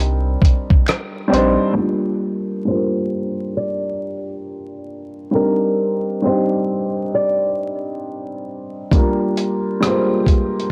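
Hazy and melancholic, this swung lo-fi hip hop fragment sets a small, fingerpicked nylon-string guitar melody over a dark, woody upright piano accompaniment, both muffled by low-pass filtering and cassette tape, while a round, deep dub sub bass and a gritty, compressed sampler-style kit with a thumpy kick, hi-hat and rim click open the piece, joined briefly by a very quiet finger snap just before one second, before the bass and drums stop at 1.6 seconds, the drums returning at 8.9 seconds amid vinyl crackle and light small-room reverb.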